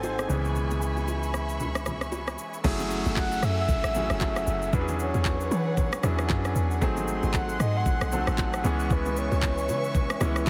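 A heavily compressed, radio-like sound with light reverb frames this hypnotic, soulful amapiano excerpt, where a bright grand piano with audible action noise and dark, bowed strings with portamento sit over a smooth R&B kit of knocking kick, handclaps, rim click, shaker and crash, very quiet ringing bongos and congas, and a hollow-body electric bass that gives way at 2.6 seconds to a round, percussive log drum bass for the drop, joined by a background downlifter and, from 3.2 seconds, a breathy, flute-like synth lead with chorus and delay.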